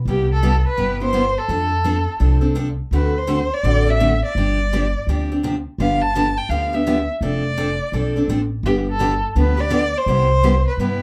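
The violin leads this charming, swinging piece of jazz manouche, a single bowed player with vibrato and portamento, sounding warm and expressive up front yet with a distant quality and a slapback echo trailing its melody. At 168 BPM in 4/4 with a swung eighth-note feel, the music sits in C major and moves through a short harmonic run from Cmaj7 through F6, D7, G7sus4 and G7 before returning to Cmaj7 near 10.1 seconds. A picked steel-string acoustic guitar supplies the accompaniment with a bright, auditorium-bodied tone, placed up front alongside the violin. Underneath, an upright bass plucked on gut strings gives a woody, dark and thumpy foundation, starting at 0.0 seconds, just ahead of the others. Light reverb surrounds this brief cut from a longer piece, which stays in a single section for its full 11 seconds.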